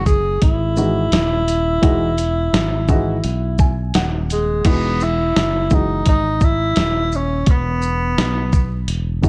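Cool and smooth, this short jazz-hop passage from a longer hip hop piece settles into a relaxed groove with a gentle swing on the sixteenths, its harmony opening on an Emaj9 chord. A breathy tenor saxophone carries the melody from the start, its jazz-style solo line shaped by light vibrato and scooped notes, with a mellow, roomy tone that sits up front yet still carries a distant air. Beneath it, a fretless electric bass plays round, dark low notes recorded direct and placed close. The dusty sampler-style drum kit brings a thumpy kick, a fat snare, hi-hat, shaker and crash, gritty and compressed, with the character of a large room. A woody upright piano with short sustain enters at 0.8 seconds and plays a fill from 3.2 to 4.7 seconds, leading into the second section of a warm, dry mix.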